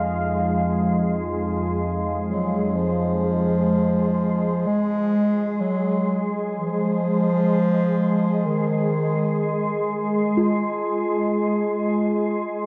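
An organ-like drone, a deep pad of sustained chords and a ringing bronze singing bowl open this ominous, vast excerpt of dark ambient drone music in free time. The drone sits up front, calm yet warbling and detuned, with an ensemble chorus, and it holds through the whole passage. The moody sawtooth pad, with its sub octave and chorus, stops at 2.7 s as the harmony settles onto F minor. Just before that, at 2.3 s, a solo bass clarinet takes the melody, dark with a smooth top and played in classical style, each phrase trailed by a dub echo. The metallic, meditative bowl, with its slow beating, stays in the background and returns near the close at 10.4 s. A moderate plate reverb with a 3-second decay and an echo-heavy mix shape the recording.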